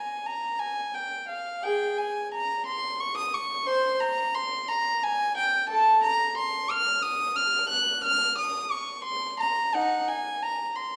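In a rubato 3/4 at about 88 BPM, this solemn, grave, baroque-style suite movement for unaccompanied violin unfolds as a fragment cut from a longer piece, settling into Bb minor from 5.7 s, with tuning at A4 = 439 Hz. A single bowed violin in period style carries everything, its reedy gut-string tone touched with light vibrato as it ranges from Eb4 up to Gb6. The violin sits up front, yet the listener seems placed further back in a stone room whose reverb lingers for about 1.3 seconds.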